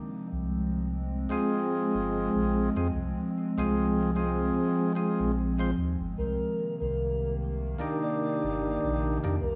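Trip hop at 74 BPM in 4/4, with a lazy swing on the sixteenths, this smoky, hypnotic passage from a longer piece moves from F minor to C minor seventh. A warbling, nostalgic pad with a lo-fi, detuned character holds sustained chords from the start, softened by chorus and its own reverb. A deep, round dub sub bass enters at 0.3 seconds and sits up front, while a percussive tonewheel organ arrives at 1.3 seconds with key click, light overdrive, harmonic tremolo and tape echo. At 6.2 seconds a pure, breathy sine lead glides in with vibrato and portamento, its dark tone trailed by chorus and dub echo. The mix sits in a light, digital ambience that keeps the whole haze intimate.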